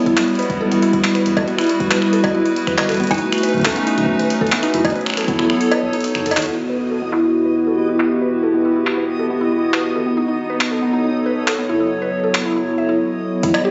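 A straight 4/4 pulse of gritty, pitched-up jungle sampler-style drums, with cowbell, finger snaps, handclaps and hi-hat, drives this cerebral, eerie IDM excerpt alongside a soft electronic kick that drops out at 5.6 s, a hollow, flute-like pad up front with chorus and 12-bit sampler grit, woody mallet-like synth pluck arpeggios through chorus and delay, a round, deep analog bass in the background and a reversed, dreamy swelling texture behind. Filter sweeps on the drums and arpeggio run from 6.5 s to 13.4 s, overlapping a break that begins at 13.0 s, all captured through a phone recording of the room.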